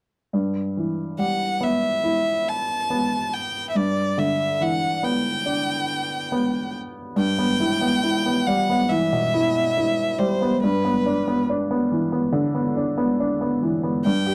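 Tender and emotional, this short fragment of a slow pop piece in straight 4/4 is built on just two instruments. A worn, woody upright piano, slightly detuned and with a short sustain, opens at 0.3 seconds with accompaniment in its low-to-middle register. A single bowed violin enters at 1.2 seconds and carries the melody in a higher range, its tone smooth and even, colored by vibrato. The harmony moves between Em/G and G6, and the pattern begins again when a new section arrives at 7.2 seconds. Both instruments sit up front in a dry, close recording with the sound of a 1970s studio, touched by only light reverb.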